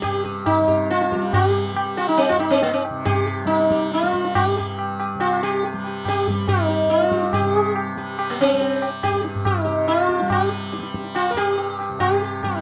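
In a straight seven-beat cycle that keeps speeding up, this solemn, longing Hindustani classical excerpt sets an up-front, bright, plectrum-plucked sitar with buzzing sympathetic strings and a round tone over a softly plucked, shimmering tanpura drone and low-tuned, ringing tabla, all three sounding throughout in moderate studio reverb within a rough home demo mix.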